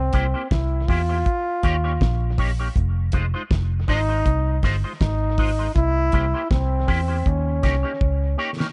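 A dry, close recording with a dull, rolled-off top opens this short, hypnotic and laid-back roots reggae cut, its sixteenths lightly swung over chords moving from C7 and Eb7 to Fm7. An up-front trombone carries the solo melody, its pop-style phrases trailed by dub echo. A round, foam-muted fingered bass and a damped 70s kit with a fat snare, tight kick and hi-hat anchor it, while a twangy, scooped electric guitar through an envelope filter adds chorused, echoing accompaniment, and the drums close with a fill from 8.0 to 8.7 seconds.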